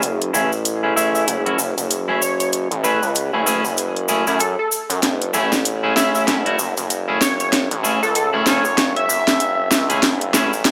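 Set in a moderate digital plate reverb, this short glitch hop cut has a gritty, playful swing on the sixteenths and plays as a single build-up over an F#m7 chord. The layered electronic kit puts a cracking snare and bright hats up front, with overdrive and a small-room re-recording, and breaks into a drum fill at 5.0 s that runs to the end. A grainy acoustic cabasa sits distant in a large room, while the aggressive driven synth bass blends sawtooth and sine with oscillator sync, a resonant filter pluck and saturation, thinned by a high-pass filter. Clean, picked electric guitar stabs enter at 0.3 s with a scooped tone, lush chorus, a low-pass filter and tape echo. From 1.0 s an edgy, tearing sync lead carries the melody with vibrato, chorus, cassette-tape coloring and its own tape echo.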